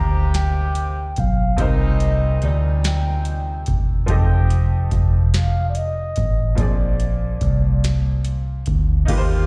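A mellow, horn-like synth lead with a soft attack and gentle vibrato leads this intimate slow R&B excerpt in 6/8 at 48 BPM, carried over a brilliant baby grand piano and a distant, roomy horn section that stabs until 3.6 seconds before returning briefly at 9.1 seconds. A dark, foam-muted fingered bass sits up front, round and punchy, joined at 0.3 seconds by a booming analog drum machine with a deep kick, crisp snare and metallic hats. The chords move from Eb69 through Cm9 and F9 to Bb9, and the whole is heard through a live venue's PA with a recital-hall ambience.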